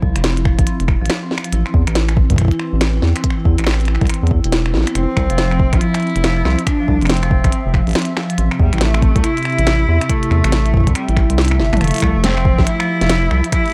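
A swung 16th-note groove at 140 BPM in 4/4 drives this wistful, playful IDM excerpt in F major, where a deep electronic kick and a glitchy kit of finger snaps, clicky hi-hats, a tiny snare and toms sit over a round, dark analog bass, while a metallic, ringing vibraphone plays arpeggios through gritty 12-bit sampler texture and dub echo, a hollow, flute-like pad holds sustained chords with chorus and sidechain pumping in the background, and from 5.0 s a bright, distant bowed cello carries a vibrato melody with its own dub echo, before a drum fill at 11.4 s leads into the closing section, the mix staying dry.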